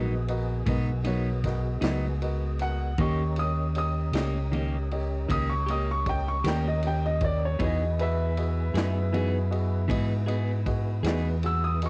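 Slow blues in G# minor at 52 BPM in a straight 12/8, brooding and mournful, in a short excerpt cut from a longer piece that moves through G#m7, D#7 and Emaj7. A woody upright piano with long sustain carries the solo line throughout, over a dark, compressed clean electric guitar with harmonic tremolo, an intimate grand piano with audible action noise, and a mellow tonewheel organ holding chords in the background through a slow rotary speaker and chorus vibrato. A round, punchy fingered electric bass sits up front, and a vintage drum kit with dark cymbals and a rolled-off top enters at 0.3 seconds with kick, snare and ride, all captured in a small-room home recording on cassette.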